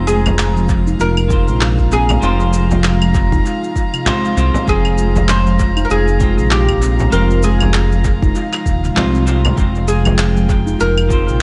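This excerpt has an echo-heavy, softly darkened sound, with light reverb and a digital ambience that keeps the top end smooth and rounded. It is mystical organic downtempo in F minor at 98 BPM, with a 16th-note swing that rests on a single Fmadd9 chord. A smooth, saturated synth bass sits up front, pumping against the deep, tape-warm electronic kick, which enters at 0.7 seconds. The electronic cabasa, claves and handclaps and a large, soft-handed frame drum in the background are both thrown into dub echo. A bright, woody fretless oud carries the melody through analog delay, while a steel tongue drum played with soft rubber mallets rings out meditative arpeggios behind it. A clean, picked electric guitar, an ethereal airy pad with chorus and tremolo, and a drifting glass-harmonics texture of glassy overtones fill the background.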